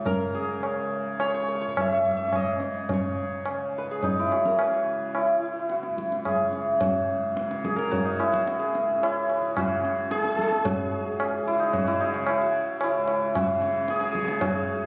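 Set in a seven-beat cycle with a straight feel, this Hindustani classical performance gradually speeds up from start to finish, carrying a solemn, longing mood. The santur leads the melody up front, its hammered strings bright and ringing across a span of two octaves. Beneath it the tanpura holds a low, softly plucked drone, buzzing and shimmering at a gentle level throughout. The tabla, tuned low and placed close, enters at 0.1 s with short-ringing strokes that carry a small-room character. The music moves into a new section at 6.8 s, and the clip, cut from a longer piece, ends at 14.9 s. Captured on a phone in the room, the sound is bathed in recital hall and club reverb and pressed together by compression.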